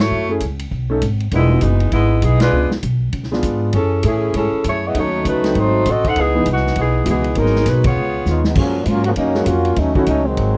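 Sultry and swinging, this brief cut from a big band swing piece in C# minor moves at 199 BPM, with a mellow saxophone section carrying the melody over a woody, thumpy upright bass, a punchy big-band drum kit and an intimate grand piano with audible action noise; band accents land at 2.4 and 7.8 seconds, and a drum fill leads into a bright, soft-attacked trombone section solo at 8.6 seconds, captured in a dry, close 1970s-style studio sound.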